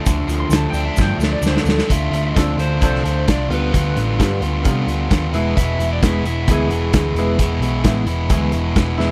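A straight 4/4 pulse at 131 BPM drives this moody, cool indie rock excerpt, with a loose, up-front drum kit whose tight kick and medium-tuned snare sit in a pumping small room, a round hollow-body picked bass, and a grainy egg shaker in the background that drops out at 1.8 s. A dark, twangy guitar riff through a small old amp, touched with subtle chorus and tape echo, sits alongside a compressed overdriven guitar riff, while a slightly broken-up lo-fi lead guitar with phaser carries the melody high above. A clean guitar solo opens over Dmadd9 with a drum fill from 1.0 s, before the harmony moves at 1.9 s through Dm7 and G7 to E, all in a dry, close sound.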